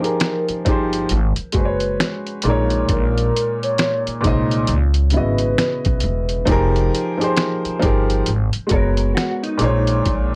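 A warbling, detuned lead with chorus, analog delay, vibrato and portamento carries a reflective, melancholic melody until 6.4 s in this lo-fi hip hop excerpt at 67 BPM in F minor with swung 16ths, over an open, woody upright piano with cassette-tape grit, a pizzicato upright bass fattened by tube saturation, and a muffled, compressed sampler-style kit of thumpy kick, fat snare, hi-hat and finger snaps, before a dark, clean electric guitar with ensemble chorus and delay slips in at 8.7 s, all captured as a dry, gritty hardware recording.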